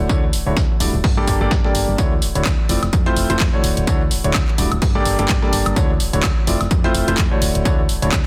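Joyful and feel-good, this piano house excerpt moves at 127 BPM in D major with a swung 16th-note feel, led by an up-front grand piano riff with long sustain, sidechain pumping and tape echo, cycling through Dmaj9, Gmadd9 and Fmaj7 chords. Beneath it sit a round, dark FM bass that also pumps, a punchy overdriven electronic kick re-recorded in a large room, and a bright, layered house kit of handclaps, hi-hat and woodblock carrying overdrive and studio reverb. A very quiet, gritty sampler-style kit adds hi-hat, snare and tambourine, and the mix has light reverb and a dense, heavily limited modern master.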